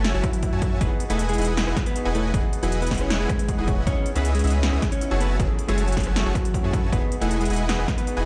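A mellow, dark electric guitar melody with tape echo opens this playful, lush future bass excerpt in a half-time feel, alongside a huge, detuned supersaw riff and a thick, saturated sub bass, all pumping to the sidechain beneath a big-room dance kit of punchy snare, crisp hats and rim clicks. A very quiet swell enters at 0.2 seconds as an overdriven, up-front electronic kick joins, and at 0.8 seconds a brilliant grand piano slips in behind as accompaniment over chords moving from F#m7 through Emaj7 and C#m7. The whole mix sits in a stone-room reverb, as if played on a big sound system in a bare space, with the top end rolled off above 10.4 kHz.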